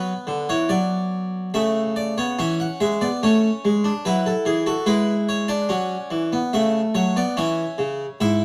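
Dark, lightly reverberant production frames a close-miked, dry harpsichord in the Italian style, its plucked tone full and up front with two sets of strings. This elegant, joyful fragment of a baroque-style three-part fugue in A major moves at 72 BPM in a straight 4/4, the solo harpsichord spanning G#2 to F#5. A brief opening on B minor gives way at 1.5 seconds to a new section that passes through A/C#, A and E7/G# before settling back on A/C# near 6.5 seconds.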